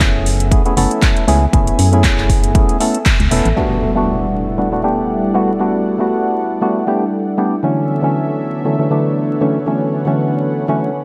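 Smooth and hypnotic, this deep house excerpt sets hollow, nasal organ stabs up front, treated with chorus, analog delay and sidechain pumping, over an ethereal, airy pad in the background, while a dark FM bass, a punchy electronic kick and a house kit of handclaps and metallic hi-hats drive the opening up to a band accent at 3.1 seconds, after which an electronic impact and a detuned sawtooth analog pad of sustained chords arrive at 3.6 seconds above a bed of vinyl crackle.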